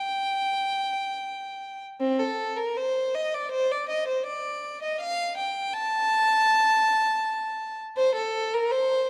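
In a flexible 4/4 with a gently rubato pulse, this brief classical passage from a baroque-style suite movement for unaccompanied violin feels dance-like and serene. A single bowed violin carries the whole 9.1 seconds alone, its rich, focused tone shaded with vibrato and placed up front as it moves between C4 and A5. A moderate concert-hall reverb and a dark production surround the instrument, giving the fragment, cut from a longer piece, a calm sense of space.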